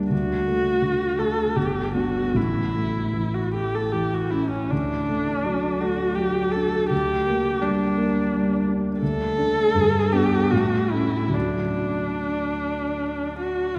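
The 3/4 pulse moves with free rubato between 70 and 88 BPM in this tender Romantic-era duo in D major, cut from a longer piece and set in a church's wet reverb with a long 3.6-second decay. A viola carries the melody from 0.1 seconds, bowed by one player close and up front with a soft attack, vibrato and expressive portamento, while a dark, mellow concert grand accompanies from the start, its deep bass and audible action noise giving an intimate, vintage feel. The harmony circles through D, G and A, with a shadow of G minor over D at 6.9 seconds before returning home to D.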